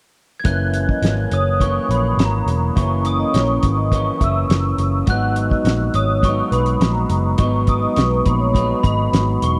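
Hazy and lonely, this short stretch of indie bedroom pop sits in a straight 4/4 at 104 BPM, cut from a longer piece. A cloth-damped drum kit thuds up front with a fat snare, tight kick and hi-hat, its rolled-off top keeping it dark and smooth, while a foam-muted picked electric bass adds a round, amped low end close beside it. An electric guitar through a small old amp plays compressed, slightly broken-up accompaniment, bathed in lush chorus with a warbly pitch drift. Over this, a glockenspiel struck with soft plastic mallets carries the melody in a dark, smooth, bell-like and ringing tone, treated with analog chorus. A mellow vibraphone with soft mallets and its motor off sits in the background from 0.5 to 9.0 seconds, its second line colored by analog chorus and tape echo. The harmony moves from F#7 to G#m7 at 5.1 seconds, all captured in a dry, close 1970s-style studio sound with little reverb.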